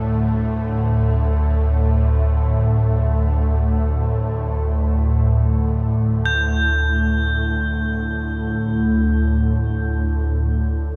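World meditative music in free time, this short excerpt from a longer piece feels haunting and meditative. An ethereal, airy pad holds a low drone from the start to 11.0 seconds, its detuned sawtooth and triangle tones blended in unison with a moving notch, a slow attack and a long release, sitting mellow and up front under ensemble chorus and built-in reverb. High crotales struck with plastic mallets add a bell-like, shimmering texture until 10.6 seconds, ringing softly behind the pad through a shimmer reverb. The whole mix is dreamy and soaked in a lush hall reverb, with a hint of small-room ambience beneath it. The tuning sits slightly above standard pitch, at A4 = 441 Hz.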